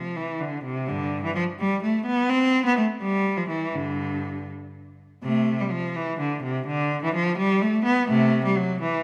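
Set in a lilting 6/8 at 84 beats per minute counted in dotted quarters, this classical piece unfolds with a rubato feel that lets the phrases breathe freely. It is a baroque-style suite movement for unaccompanied cello, flowing and serene in mood, and this brief passage is cut from a longer work. A single bowed cello plays solo throughout the 9.0 seconds, ranging from G2 up to C4 with a clear, focused tone and vibrato. The instrument sits up front in the sound, close and present. A moderate scoring stage reverb with a 2.0 second decay surrounds it, lending an airy sense of space that suits the flowing, serene character.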